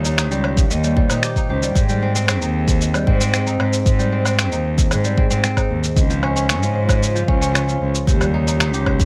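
A lightly reverberant mix opens this short folktronica excerpt, a delicate, pastoral piece in Ab major at 114 BPM in a straight 4/4. A single bowed cello, rich and smooth with vibrato, holds the bass up front, while a fingerpicked acoustic kora plays crisp, ringing arpeggios through digital delay and plate reverb. A vintage vibraphone struck with medium mallets adds a metallic, band-limited second line with slow motor vibrato, treated with delay and plate reverb. Behind them, a warbling, detuned tape-like pad sustains mellow, nostalgic chords with slow attack and long release, colored by chorus and phaser. Muffled, pitched-down electronic shaker, finger snaps and woodblock give the drums a compressed, sampler-style texture, and a deep electronic kick enters up front at 0.6 seconds. The harmony moves from Eb to Abmaj7, then to Db, and back to Eb.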